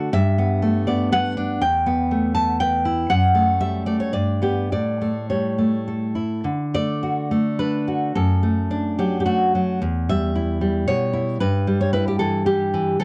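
A fingerpicked nylon-string guitar sits up front, with fresh strings that give it a bright, full-bodied tone and audible finger squeak. This romantic classical piece for solo guitar moves in 3/4 at a rubato tempo between 99 and 124 BPM, and its D major harmony carries a nostalgic, warm mood. The opening phrase moves through G, Em, F#m7, G and A. At 6.4 seconds the second section settles onto D and then passes through D/F# and Em toward Em/G. The guitar spans E2 to A5 and has a cassette tape colour from its home recording, heard in a moderate booth ambience. This 13-second excerpt is taken from a longer piece.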